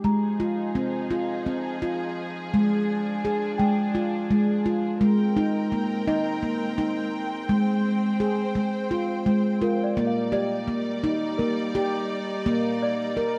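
A restless 7/8 metre at 169 beats per minute in eighths drives this short, straight-feel passage of contemporary chamber music in F dorian, cut from a longer piece and carrying an urgent yet pensive mood. Up front, a handpan plays ringing, meditative arpeggios with a mellow, full tone, its nitrided steel touched by soft fingertips. Behind it, a dark studio string section holds sustained, bowed chords with a woody ensemble colour, light vibrato and a gentle attack. A worn celesta adds a delicate, bell-like texture higher up, sweet from its felt hammers yet slightly out of tune, and sits at the same lower level as the strings. The harmony moves from Fm7 to Abmaj9 at 5.0 seconds and settles on Ebmaj7/G at 10.0 seconds. The recording is close and detailed with little reverb, so the handpan and celesta sound dry and intimate.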